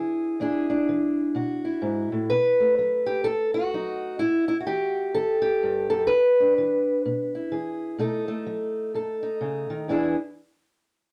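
Swung eighths roll along in 4/4, giving this short excerpt of acoustic country blues a swaggering, laid-back feel as it moves through E7, B7 and A5. A lone fingerpicked ladder-braced guitar sits up front, its old strings sounding woody and boxy, and it plays alone until 10.2 seconds. Moderate studio reverb and a dark production frame the whole piece.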